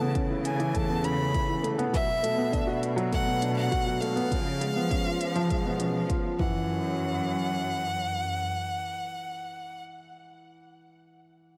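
A deep, layered electronic kick and crisp hi-hats drive a straight 4/4 pulse at 101 BPM through the opening drop, with the drums falling away by 6.5 seconds in this short cut from a longer piano and strings electronica piece. Up front, a thick-felt, mellow upright piano plays a delayed riff, while a smooth bowed cello section carries the bass with sidechain pumping. Over them, a single biting, airy violin plays an intense, vibrato-laden melody through delay, giving the hypnotic, moving track its emotional pull across chords from Aadd9 to Esus2/F# in a light, small-room space.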